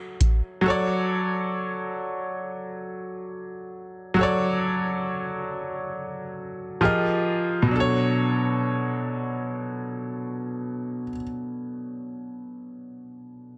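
Played in free time, this brief R&B fragment drifts with a longing, moody feel, cut from a longer piece. A single baby grand piano carries the whole accompaniment from the start until 13.6 seconds, ranging from B2 up to E5. Its tone is clear and intimate, sitting up front with a natural character and audible action noise that brings the listener close to the instrument. The harmony moves from F#m7 to Dmaj7/F#, shifts to Fm11 near 6.8 seconds, and settles on Bm9 as a new passage begins at 7.7 seconds. Light reverb and a digital ambience surround the piano, and the master is dense and heavily limited in a modern style.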